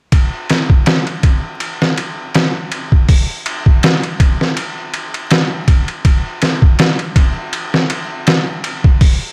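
A slow 81 BPM groove in 4/4 with a light swing on the sixteenths drives this short, dark and melancholic trip hop fragment, carried entirely by a sampler-style drum kit of kick, snare, hi-hat and ride cymbal from 0.1 to 9.2 seconds. The kit sounds pitched down, compressed and gritty, with a thumpy kick, a medium-tuned snare and an overdriven edge, and it sits up front in the mix. Light reverb and a layer of vinyl crackle wrap the drums in a dusty, brooding atmosphere.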